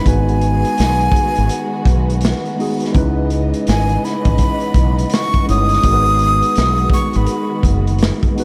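A swung sixteenth-note groove in 4/4 drives this short, sultry neo-soul excerpt, built on a gritty, saturated breakbeat kit with a punchy kick, snare and hi-hat alongside a round fretless electric bass touched with subtle chorus, both sitting up front. A clean, mellow tine electric piano and a lush, woody bowed string section hold the harmony as it moves from G#m7 to C#m9 and back. Over them a breathy jazz flute with a soft attack carries the expressive, soulful melody through a tape echo until 7.9 seconds, all in light studio reverb.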